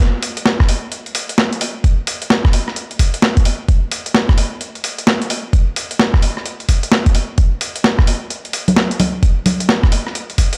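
UK garage at 130 BPM in 4/4, with a 63% swing on the sixteenths that gives this short excerpt a bouncy, soulful strut. A boom bap sampler-style drum kit carries the groove from 0.2 seconds, its congas, hi-hat, rim click and high-tuned snare sounding pitched down, compressed and gritty, as if re-recorded in a large room yet kept up front. An electronic kick drum joins at 0.6 seconds and sits louder than the kit, a thumpy, sampler-style hit that shares the same pitched-down crunch and roomy re-recorded character. The whole passage is a single section cut from a longer piece. Reverb is minimal, and the sound is dry with the grain of hardware gear.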